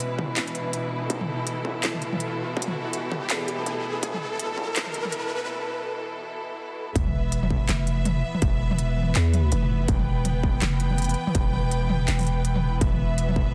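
Half-time drum and bass at 164 BPM in E phrygian, this short cut from a longer piece feels spacious and heavy, with a swung half-time groove. A rich, lush symphonic string section holds bowed, vibrato-laden chords throughout, its smooth ensemble tone pumped by sidechain, while a growling, buzzy 808-style bass sits up front with a fast attack and decaying sine body. An industrial drum kit of handclaps, smooth hats and toms carries a tape-warm, produced character, joined by a distorted electronic kick that drops out from 4.7 seconds and returns at 7.0 seconds. Electronic riser and sub-drop effects shape a build-up whose riser ends at 5.5 seconds, giving way to a brief break before the drop lands with an impact at 7.0 seconds. Light reverb adds a digital ambience, and the master is dense and heavily limited in a modern style.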